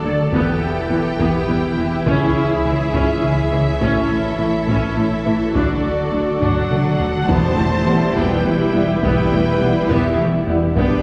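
The recording sits far back in a wet scoring-stage reverb, giving this tense, futuristic stretch of hybrid orchestral and electronic film score a distant air as it moves at 69 BPM in a straight 6/8. From the start, lush bowed violins carry a second line over focused violas and a rich, smooth-topped cello section, while a brassy, detuned analog pad with chorus holds sustained chords in the background. Underneath, a smooth sawtooth synth bass plays a riff above a clean sine sub bass, and a round, tine-like thumb-piano-style FM pluck warbles through quiet, dark arpeggios. Heavy-stick taiko drums enter at 0.3 s as the harmony steps through E minor, C-sharp minor, A and D in a build-up, capped by a drum fill as a second, intense violin section takes up the melody at 6.4 s. At 7.3 s the music settles into E minor with a huge, dark impact, a very quiet double bass section joins, and a mellow, vintage-toned French horn section adds soft sustained chords before the cut.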